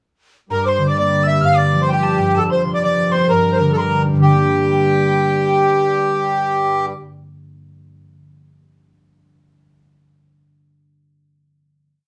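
A reedy accordion with slow beating leads this wild, driving Celtic polka in G minor at 128 BPM, stating a motif-based melody in period phrases over a swung 2/4 pulse. A breathy metal whistle, close-miked with a soft attack, follows the same line higher up with its own ornaments, while an up-front fingerpicked concert harp supplies ringing bass notes and broken chord figures and a nasal, breathing harmonium holds a drone in the background. The band plays live in one room with wet studio reverb, landing on a final chord at 4.2 seconds; the other parts stop at 6.9 seconds and the harp rings on alone until 8.1 seconds.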